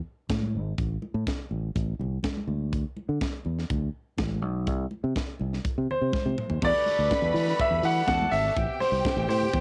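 A straight 4/4 disco groove at 123 BPM opens at 0.3 seconds, driven by a round, punchy fingered electric bass sitting up front and a tight funk drum kit with a high-tuned snare, tight kick, hi-hat, toms and crash, colored by cassette tape, while ringing, high-tuned congas played with soft hands sit in the background. The mood is joyful and celebratory, and the opening stretches over open, chordless passages with a brief D5 moment before a drum fill from 6.1 to 6.6 seconds sets up the next section. A warm concert grand piano with deep bass carries the melody from 5.9 seconds, its natural tone treated with cassette tape and tape echo. At 6.6 seconds a lush, bowed studio string section adds a focused second line with vibrato and a smooth top, while an overdriven tonewheel organ, gritty and thick through a slow rotary speaker, holds sustained chords in the background. The harmony moves from Em11 to Am9 under light reverb, with the whole thing carrying the homespun feel of a cassette home recording, cut from a longer piece.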